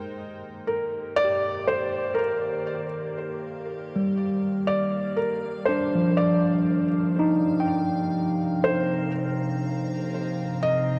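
Peaceful and luminous, this ambient fragment at 60 BPM in Eb major opens on an evolving wavetable pad that fades in across the whole span, its bright, morphing chords passed through phaser and bathed in a huge reverb, moving from Ebmaj7 to C7sus4 at 7.2 seconds. At 0.7 seconds a felt-muted upright piano enters up front with a soft, mellow, intimate melody touched by delay. At 1.2 seconds an overdriven tine electric piano adds barky, gritty arpeggios through a combo amp, colored by phaser and delay.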